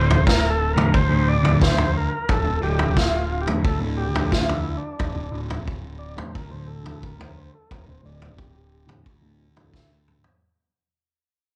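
A straight 4/4 pulse at 89 BPM drives this dark, hypnotic psychedelic rock excerpt in D minor, where a punchy, up-front vintage drum kit with rolled-off top supports a double-tracked fuzz guitar riff colored by phaser, a warm overdriven fingered bass, and a buzzy, heavily vibrato-laden combo organ solo, all set in a live-room reverb beneath a filter sweep and across a fade-out that closes with a drum fill at 9.7 seconds.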